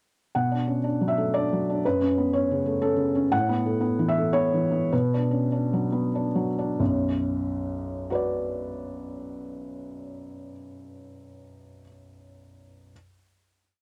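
A felt-muted upright piano plays alone from 0.3 seconds, its soft, intimate tone sitting up front in a dry, close 1970s-style studio sound as a single-line melody floats over rocking broken chords through Bm7, F#m, Asus2 and Bm in a melancholic, reflective neoclassical minimalist piece in B minor and 3/4, its rubato pulse between 91 and 124 BPM slowing from 2.6 to 6.8 seconds before a final chord that rings until 10.7 seconds.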